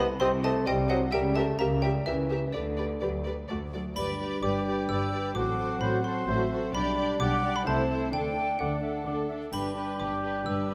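A playful, whimsical film cue in waltz time opens with lush, vibrato-rich violins carrying the melody alongside a woody xylophone over a darker second violin line, a vintage-toned bassoon, violas, and distant cellos and double basses, until at 4.0 s an airy flute, tight mellow French horn chords and a dry triangle join, followed at 4.4 s by a roomy oboe and clarinet adding second lines, all bathed in a scoring-stage reverb for a magical feel.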